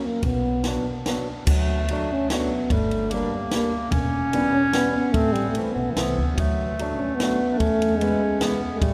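A mellow euphonium carries the melody with vibrato and a smooth top in this bouncy, jolly alpine folk dance in D major at 147 BPM in 3/4, while an up-front, warm clarinet adds a classical second line from 1.5 seconds, a dark fingerpicked archtop guitar sits in the background, a woody pizzicato upright bass anchors the low end, and a compact cocktail kit with a tight kick, high-tuned snare and dark cymbals keeps a dry, natural pulse, all heard in a long, wet church reverb over a short cut from a longer piece.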